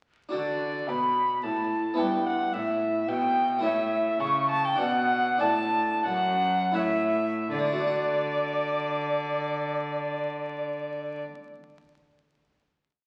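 An airy, vibrato-tinged baroque flute doubles a dark, nasal gut-string violin in unison on the tune of this short, radiant, dance-like baroque-style sonata movement in D major and 3/4 at 77-110 BPM, over a close-miked, round Italian harpsichord playing rolled chords and a rich, reedy cello walking bass, slowing from 2.8 to 7.5 seconds before a final chord, all heard through a 1.6-second recital hall reverb and the crackle of a very old 78 rpm record.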